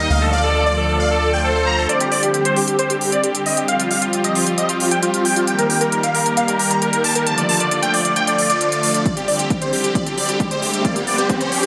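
Bittersweet and emotional, this uplifting trance passage moves at 134 BPM in a straight 4/4, set in C dorian and cut from a longer piece. Huge, detuned supersaw chords carry the melody throughout, bright and up front, colored by a phaser, a low-pass filter, digital delay and sidechain pumping, while a lush supersaw pad with a soft attack and long release holds sustained chords beneath, pumping as well. For the opening 1.9 seconds a pure, floating violin section adds a bowed second line with delay, alongside a tight, punchy sequencer bass with a fast, decaying filter pluck. From 1.9 seconds the build-up begins as smooth, overdriven electronic hi-hats push forward, and a heavy, layered kick drum arrives at 9.1 seconds for a drum fill. An electronic riser enters at 9.7 seconds, and the harmony cycles through Dm, Csus2, Fsus2 and Eb inside a moderate, lush hall reverb.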